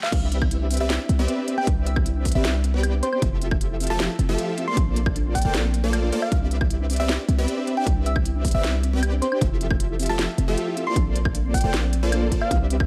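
A half-time 4/4 groove at 155 BPM drives this bright, lush future bass drop in C major, with an up-front, hard-clipped electronic kick and a tape-warm trap kit of sharp snare, crisp hats, crash and woodblock under a deep, boomy 808-style bass that pumps against the sidechain. A punchy, detuned supersaw stab riff with a filter sweep carries chords moving from Cmaj9 through Fmaj9 and Bbmaj9, while a round, keys-like FM lead sings the melody from C5 to C6 with chorus and delay. In the background, an airy, dreamy unison lead with vibrato and portamento and a dark, filtered pluck spin arpeggios, the mix staying dry and close throughout this excerpt cut from a longer piece.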